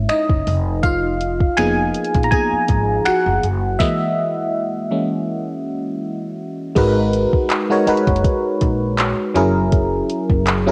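Sensual and longing, this contemporary R&B fragment from a longer piece sets a glassy, bell-like FM electric piano, colored by chorus, phaser and cassette tape, in a solo over the first 6.8 seconds, with a stop from 3.8 to 6.8 seconds, above a woody pizzicato upright bass and an up-front electronic drum kit of soft kick, sharp snare, warm hi-hat, finger snaps, handclaps and crash cymbal, also taped to cassette, in a home-recorded room with light reverb.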